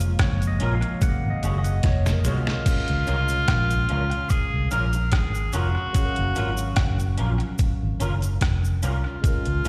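A loping, gently swung four-beat groove comes from a detuned 8-bit drum machine, up front with a thumpy kick and fat snare, alongside a dark, round, foam-muted electric bass. This short cut from a longer lovers rock reggae piece feels romantic and tender, opening on a featured passage for the barky tine electric piano, lightly overdriven through a combo amp and colored by phaser, tape echo and slapback echo. A drum fill leads into the second section, where the chords settle onto Db6 and later Gbmaj7. From 0.6 seconds an electric guitar through a small old amp adds slightly broken-up, lo-fi stabs with ensemble chorus, while a close cabasa with tape echo sits in the background. At 2.2 seconds a bright tenor saxophone takes the melody with scooped, vintage pop-style phrasing, all heard as a live gig through the venue's PA with recital hall reverb.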